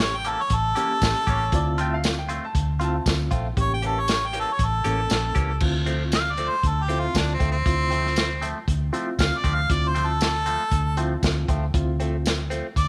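Mournful and soulful, this straight-eighth soul blues in D minor at 118 BPM features a bright, overdriven harmonica with vibrato and scooped notes that takes a solo from 5.6 seconds, over a gritty, saturated breakbeat drum kit with dark cymbals, a round, foam-muted electric bass, a reedy overdriven electric piano with tremolo, clean twangy guitar stabs through a phaser, and a brief woody upright piano line from 1.3 to 3.4 seconds, all in a small, lightly reverberant room.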